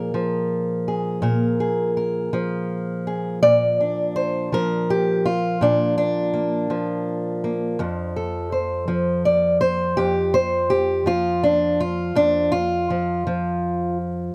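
Laid-back and gritty, this short excerpt of acoustic country blues moves at an unhurried 55 BPM in 12/8 with a straight feel, centered in Bb mixolydian and tuned slightly sharp to A4 = 441 Hz. A lone fingerpicked, ladder-braced acoustic guitar with steel strings carries the whole performance from 0.0 to 14.3 seconds, spanning F2 up to D5. Its tone is dark, woody and boxy, and the old strings lend a worn edge that suits the mood. The harmony rests on Bb7 before moving to F at 7.8 seconds. Close, detailed microphones place the guitar up front, with only a light reverb around it.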